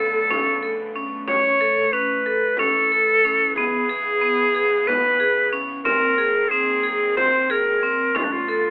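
A bright, jazz-style clarinet leads up front, carrying the melody with vibrato from D4 to C#5 across this short, urgent and restless cut from a longer contemporary chamber piece. It moves in an uneven 7/8 at 183 BPM counted in eighths, with a straight feel. Alongside it, a vibraphone struck with hard mallets plays metallic, ringing arpeggios, airy and close, colored by a medium motor vibrato. A rich, earthy chamber string section sustains bowed chords with light vibrato and a smooth top, while a deep frame drum, played with hard hands, sits distant in a large room from 0.3 to 8.5 seconds. The harmony moves through C#7b9b13/F#, F#m7, C#m7/F# and G#9/F# before returning, and the whole recording carries light reverb and a narrow, telephone-like sound.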